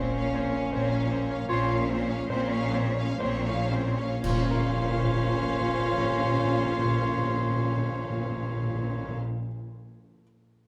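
Cinematic, emotional film score for orchestra, moving and full of longing, in Bb minor and 3/4 with a rubato feel, its tempo easing between 56 and 80 BPM as it slows through the opening 4.2 seconds over a Bbmadd9 harmony. A lush, smooth violin section carries the melody with vibrato, while a darker second violin line adds expressive portamento in the background, a very quiet, rich viola section fills in the accompaniment, and an intense cello section and soft-attacked chamber double basses anchor the low end. A French horn section holds sustained chords with light vibrato in the background, and a very quiet baby grand piano, intimate and natural with audible action noise and short sustain, rings on until 10.2 seconds after the rest of the orchestra falls away. At 1.5 seconds a pure, mellow flute with straight tone, a close-miked oboe and a distant, roomy clarinet enter with second lines. 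Timpani struck with hard mallets sound briefly at the start and return at 4.2 seconds for a band accent, joined by bright clash cymbals and concert bass drum until 6.2 seconds. The recording uses close, detailed microphones within a moderate concert hall reverb, and the piece is cut from a longer work.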